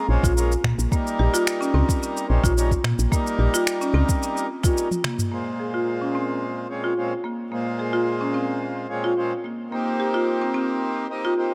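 Warm and mystical, this organic downtempo excerpt moves at 109 BPM in a straight 4/4, tuned slightly sharp to A4 = 445 Hz and built on Bbm7 and Eb7/Bb before shifting to Dbmaj7/Bb and Cm7/Bb. A reedy, breathing hand-pumped harmonium sits up front with nasal, smooth chords that pump against the beat and trail tape echo, while a bright marimba with medium hard mallets on padauk bars spins percussive, filtered arpeggios throughout. Underneath, a round, dark FM bass with a fast, decaying attack and woody tube-saturated tone pumps alongside a soft electronic kick until the bass drops out at 4.0 s. An organic electronic kit of finger snaps, shaker and low-passed toms and snare adds texture, closing with a drum fill just before falling away at 5.3 s. From that point the harmonium and marimba carry on alone, the marimba under a filter sweep, all set in light reverb and digital ambience.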